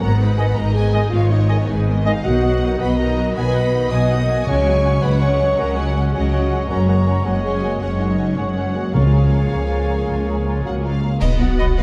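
Dark French horns hold broad sustained chords at the heart of this triumphant, heroic film-score excerpt, moving in a rolling 12/8 at 108 BPM through G#m, B, C#sus4, F#add9 and C#6 before landing on B, while lush, vibrato-rich violin sections carry the melody and a second line over bowed violas, cellos and an up-front double bass. Mellow clarinet and cor anglais add very quiet second lines alongside a hollow silver flute in the background, dark trombones sit roomy in the background, and a bright trumpet section punctuates with stabs. Hard-mallet timpani strike at 4.5 and 8.9 seconds, and dark clash cymbals with concert bass drum hit a full-band accent at 11.2 seconds, all within a moderate scoring-stage reverb and a dark production.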